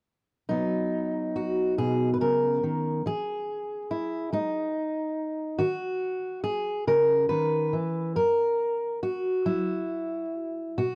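A dry, close recording in a 1970s studio style, with a touch of studio reverb, frames this short excerpt of nostalgic solo folk. A single fingerpicked steel-string acoustic guitar with a dark, auditorium-bodied tone sits up front from 0.5 to 10.9 seconds, moving freely in a rubato 6/8 through Bmaj7, Emaj7 and D#m7 before a closing stretch that leaves the harmony unstated.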